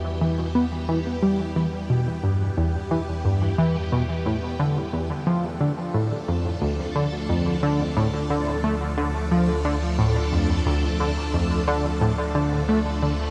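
A steady, straight four-beat pulse drives this cosmic, hypnotic stretch of ambient space music, cut from a longer piece, where a tight, nasal sequenced synth riff sits up front from 0.2 seconds with a detuned, plucky edge, coloured by chorus, cassette tape grit, tape echo and shimmer reverb. Beneath it a dark analog drone holds the bass with slowly evolving pulse-width movement and chorus, while a swirling, vintage string machine fades in across the whole span with bright sustained chords, drenched in ensemble chorus, phaser and shimmer reverb, as the harmony shifts from Em to Dm at 5.3 seconds. The dreamy mix is soaked in a huge, long-tailed reverb.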